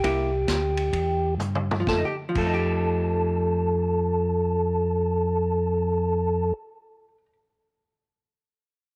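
A clean, round tonewheel organ with third-harmonic percussion and a slow rotary speaker carries the melody up front in this bluesy, soulful soul jazz organ trio fragment, swinging in 4/4 from a C7 to an F9 chord. Beneath it, a second, mellow organ plays the bass line, lightly overdriven with chorus vibrato and its own slow rotary, while a dark, compressed hollow-body electric guitar adds picked accompaniment. A gritty vintage kit with dark cymbals and a punchy kick plays a fill from 1.4 to 1.9 seconds as the opening slows down, then stops at 2.5 seconds, leaving the organs and guitar in a small room.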